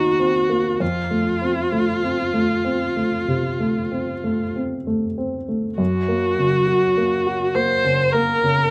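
A viola and a baby grand piano begin together at 0.0 seconds in this melancholic, elegiac passage of romantic classical music, cut from a longer piece. The slow tempo sits around 47 to 52 BPM in 4/4, played with a rubato feel. The bowed viola carries the melody in a middle register, its warm, smooth tone shaped by vibrato and an even, up-front presence. Beneath it, the piano's dark, mellow accompaniment ranges into the low register, with short sustain that keeps its notes from blooming. The harmony moves from Cm7b5/Eb to F at 0.8 seconds and on to Gb at 5.8 seconds, lending the phrase a shadowed, unresolved cast. Light reverb gives the pair a modest sense of space through to the close at 8.7 seconds.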